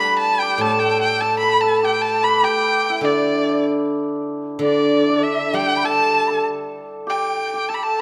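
A moderate concert-hall reverb surrounds this short, graceful and festive excerpt of Chinese traditional chamber music in 2/4, played with a rubato feel and shifting into a new section at 4.3 s. Up front, a rich, focused solo erhu carries the melody with vibrato and portamento, while a shimmering hammered dulcimer adds a ringing second line. A pure, mellow bamboo dizi with a buzzing membrane and crisp attack plays a second line in the erhu's register from a distance, and a silvery fingerpicked steel-string zither supplies low accompaniment until 7.4 s.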